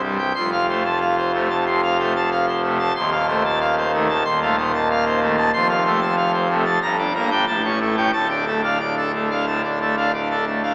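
A straight 4/4 pulse at 92 BPM carries this short, majestic and jubilant classical organ toccata, cut from a longer piece and played by a solo pipe organ on full organ with brilliant mixtures and romantic voicing, spanning C1 to C6 and set up front. The harmony moves from F through F7/Eb, then settles into D minor from 5.5 s as Gm and A7 lead to Dm at 8.1 s. A wet church reverb with a 3.6 s decay surrounds the sound, heard through a small speaker.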